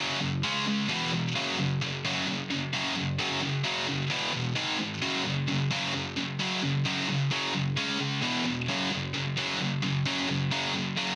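Menacing and aggressive, this short rock excerpt features a lone scooped, high-gain electric guitar, bright and picked with heavy distortion, double-tracked and placed up front. It plays by itself across the whole 11.2 seconds, ranging from E2 to C#4, with short phrases beginning at 0.4, 4.1 and 7.8 seconds. A moderate large-studio reverb and a heavily compressed, radio-like sound surround it.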